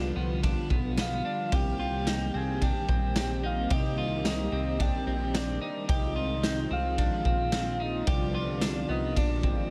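Dream pop in C minor at 110 BPM, hazy and melancholic, where a smooth, detuned sawtooth pad with chorus and shimmer reverb and a clean, picked electric guitar playing arpeggios through lush chorus, tape echo and shimmer reverb sit over a fat, filter-swept analog bass, while a gritty, saturated garage drum kit with punchy kick and dark cymbals comes in up front at 0.4 s in a pumping small room, and a round, dark octave-layered synth lead with vibrato, chorus, tape echo and shimmer reverb carries the melody from 1.0 s over chords moving through Cm7, Fm7/C and G7/C.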